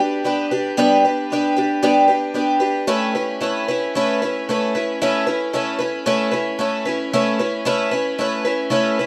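A picked twelve-string acoustic guitar plays alone, its shimmering, octave-doubled jangle sitting up front with fresh-string brightness, a boxy archtop body and the odd finger squeak, all trailed by a digital delay. This short rock cut moves at 113 BPM in a straight 4/4, with a jangly, open-road mood as the harmony shifts from G to Aadd9 at 2.9 seconds and a new passage begins at 7.1 seconds. A moderate studio reverb and a dark production frame the guitar until the piece breaks off at 9.1 seconds.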